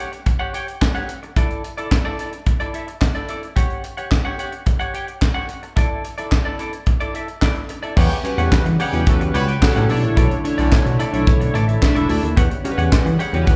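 A clean, compressed semi-hollow electric guitar riff with lush chorus and slapback echo opens this funky, danceable early-eighties boogie funk cut at 109 BPM in E dorian, joined at once by a tight, up-front funk drum kit with a high-tuned snare, crash and handclaps; at 8.0 s a glossy, pulse-wave chorused synth bass, a shimmering pulse-width pad in the background and a punchy horn section with light vibrato and slapback echo arrive, followed at 8.2 s by a mellow, full-bodied chorused polysynth, the whole performance heard as a live gig through the venue's PA with club reverb and small room ambience.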